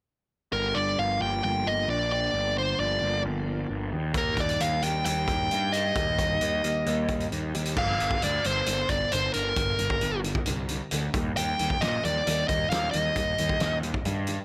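A dark, overdriven lead guitar with analog delay carries the melody up front in this brooding, cathartic quiet-loud alternative rock excerpt at 133 BPM in G minor, over chorus-soaked clean electric guitar arpeggios in the background and a growly, fuzz-laden picked bass, while a loose indie drum kit with a fat snare, punchy kick and gritty, saturated tone enters at 4.1 s, all set in light reverb as the chords shift from Gm7 and Eb to Gm and Eb.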